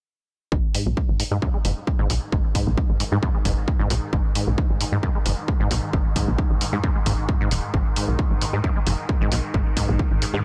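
An overdriven, heavy electronic kick drum sits up front, driving this dark peak-time techno excerpt at 133 BPM in a straight 4/4, in G# minor with tuning at A4 = 438 Hz. From 0.5 seconds, a squelchy, resonant acid saw bass carries the riff under a filter sweep, thickened by ensemble chorus and tape echo, while a tight, punchy sequencer bass with a ring-modulated, plucky edge drives the low end; both pump against the sidechain. A dry, analog-toned electronic hi-hat joins at 0.7 seconds. At 1.8 seconds a swarming, detuned drone enters in the background, tense and warbling, with a slow attack, granular texture, built-in reverb and phaser, and it pumps with the sidechain too. The harmony stays on G#5 throughout, and light digital ambience gives the mix a touch of space.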